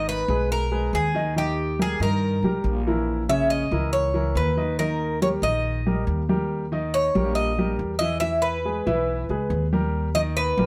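Lightly reverberant and close, this short cut from a longer Cuban son and guajira piece has a warm, nostalgic glow in a straight four. A picked, metallic tres carries the melody on its doubled strings, some of them octave-doubled, while a smooth, vintage grand piano spins arpeggios alongside it. A woody, thumpy pizzicato upright bass with dark gut strings anchors the harmony as it moves from G#m through A#dim and E before settling on D# near 9.9 seconds.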